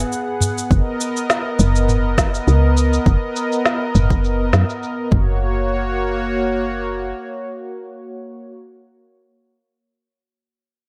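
A lightly reverberant, earthy excerpt of organic downtempo at 102 BPM in F# major with swung sixteenths: a bright, detuned sawtooth analog pad with chorus, tremolo and sidechain pumping holds sustained chords up front beside a round, woody FM bass that also pumps, while a low-pass-filtered, tape-toned electronic shaker and snare with a filter sweep enter at 0.1 s, a small, band-limited udu sits in the background, and a punchy, layered electronic kick joins at 0.7 s, before the drums and udu fall away by 5.2 s, leaving pad and bass. The harmony moves from G#m7 to Bmaj7/F# at 0.7 s and settles on F# at 5.1 s.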